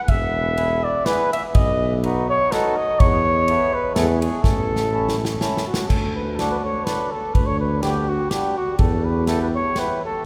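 Bathed in a long, wet cathedral reverb, this jolly, bouncy alpine folk dance-band excerpt in 3/4 at 124 BPM swings lightly as a mellow, roomy flugelhorn carries the melody up front over a soft-attack tuba bass and a reedy, vintage accordion with dry tuning, while a punchy acoustic drum kit with dark cymbals plays a fill from 4.4 s that leads into the move from A major to D major at 5.9 s.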